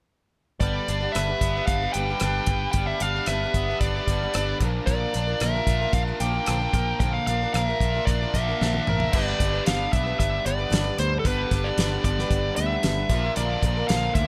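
A dark, smooth lead guitar sits up front, its overdriven tone trailed by analog delay as it carries the melody within a range of A4 to G5 across this short excerpt of folk rock and heartland rock at 113 BPM in a straight 4/4. Beneath it, a boxy picked acoustic archtop guitar fills in the accompaniment while a biting, bright, double-tracked overdriven guitar plays a riff in the same register. A fingered electric bass with a round, foam-muted tone holds down the low end, and a damped 70s drum kit with a fat snare, tight kick, dark cymbals, rim clicks and toms keeps a dry beat. The harmony moves between G and Bb, and a drum fill from 8.6 to 9.1 seconds leads into a second section. The mood is hopeful and warm, set in a light reverb.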